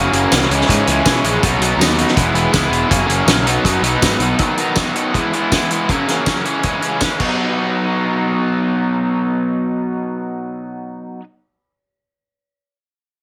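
A crunchy, bright overdriven guitar riff, double-tracked and up front, opens this upbeat, carefree indie rock excerpt at 161 BPM in B major alongside a round fuzz bass that drops out at 4.3 seconds, while a very quiet detuned sawtooth pad with chorus holds smooth sustained chords and a loose, gritty, small-room drum kit with fat snare, tight kick, crash, hi-hat and tambourine plays through to a fill at 7.2 seconds, before the guitar carries on alone to 11.2 seconds in a moderate studio reverb.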